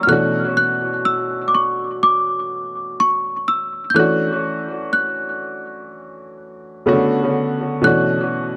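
A worn celesta and a clear concert grand piano begin together, the celesta carrying a bell-like, slightly out-of-tune melody between C#6 and G6 while the piano supplies accompaniment with a deep bass and short sustain. This is a slow, straight-feeling R&B excerpt in 4/4 with a longing, late-night mood. The harmony moves from Bm11 to Dmaj7 at 4.0 seconds, then to Bm7 and back to Bm11 near the close. Both instruments sit up front and pass through analog delay, with the close-miked celesta sounding delicate and sweet through its hard felt hammers, and the piano natural in tone. A moderate spring reverb and a dark, echo-heavy mix with its highs rolled off give the short passage a hazy, nocturnal atmosphere before it cuts off at 8.6 seconds.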